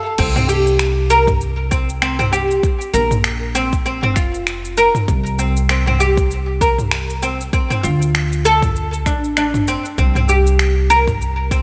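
A plectrum-plucked, fretless oud with deep double strings sits up front, playing arpeggios through tape echo from the very start of this mystical, warm organic downtempo passage, which is cut from a longer piece. A woody, thumpy upright bass played pizzicato pumps with sidechain compression alongside a deep, layered electronic kick. Beside them, a produced deep house kit of crash cymbal, finger snaps, shaker and toms sits low-pass filtered under a 16th-note swing, all in light reverb over chords moving from C5 through Bbsus2 and Dm7 before returning to C5 at 10.0 seconds.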